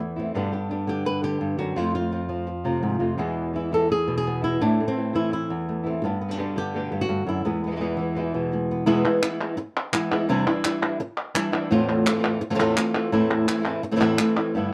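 This dramatic, mournful flamenco excerpt opens with two fingerpicked acoustic guitars at 169 BPM: an up-front lead guitar carrying the melody with audible finger squeak, and a darker second guitar adding chordal stabs beneath it, moving through G, F and E before settling on Am/E. Crisp palmas hand claps, close and set in a small room, join at 9.1 seconds as the second section begins. The dark production sits in moderate studio reverb, and the passage is cut from a longer piece.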